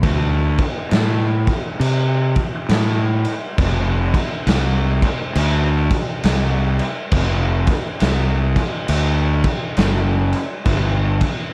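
A fuzz-drenched fingered electric bass and a raw garage drum kit start together at 0.0 seconds in this short, sludgy, heavy stretch of stoner and doom metal, plodding at 68 BPM in 4/4 with a swung eighth-note feel in D minor. The overdriven bass sits up front, round and punchy in its low register, while the kit's punchy kick, medium-tuned snare and crash cymbal come across gritty and saturated with a dark, rolled-off top and a bright stone-room character. The sound is dry and close, with the bass dropping out at 11.2 seconds just before the drums end at 11.4 seconds.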